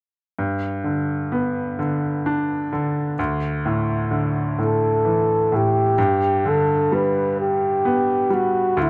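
Heartfelt and hopeful, this short excerpt from an acoustic folk-pop ballad moves at an unhurried 43 beats per minute in a straight 6/8, settled in G major. A bright baby grand piano opens at 0.4 seconds as accompaniment in its lower and middle register, its brilliant, polished tone up front and intimate, with the sound of its action audible beneath the notes. The harmony rests on G before shifting to Dsus2 at 3.2 seconds and returning to G. At 4.6 seconds a breathy flugelhorn enters with the melody, a mellow, whispered solo voice with a soft attack, a smooth top and gentle vibrato, phrased in a jazz manner and sitting slightly forward of the piano. The dry, close sound recalls a 1970s studio, with a touch of reverb keeping both instruments near and personal through the final moments.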